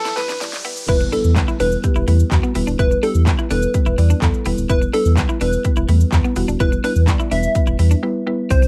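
Dance-pop in E minor at 126 BPM, energetic and driving, this excerpt opens with a drum fill on punchy, tape-coloured pop drums with fat snare and metallic hats, an electronic riser, a very quiet lush supersaw pad, a deep pumping sub bass with octave, a woody mallet-like FM pluck, a clean picked electric guitar riff with subtle chorus and a grainy tube shaker, before the drop at 0.9 seconds brings in a catchy square-wave unison lead with analog delay, all held on an Em chord in a dry, high-passed cassette home recording.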